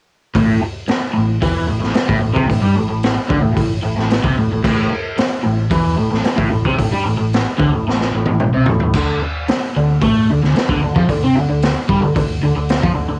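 Swaggering and rowdy, this garage rock excerpt struts at 112 BPM in a straight 4/4, with a crunchy, double-tracked overdriven guitar riff under a phaser riding up front over a punchy fingered electric bass, while a raw, gritty drum kit with a boomy kick and saturated cassette-tape coloring tears through a fill from 7.9 to 8.9 seconds that leads into the chord shift from A5 to D5, the whole take carrying the light reverb of a home cassette recording.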